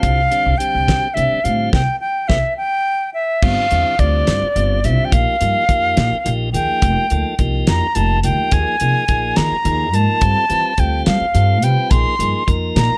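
A bright, reedy concert flute carries the melody up front with airy vibrato and a slapback echo, in a funky, slick electric jazz fusion groove at 71 BPM in 6/8, cut from a longer piece. Beneath it a lightly overdriven tonewheel organ with a stopped rotary speaker adds piping, scooped accompaniment, while a woody, thumpy pizzicato upright bass on gut strings and a dry, damped 70s drum kit with a fat snare and tight kick sit close and present. A band accent from 1.7 s and a drum fill at 3.1 s lead into a new section at 3.4 s, where the harmony moves through a chain of suspended chords under light reverb.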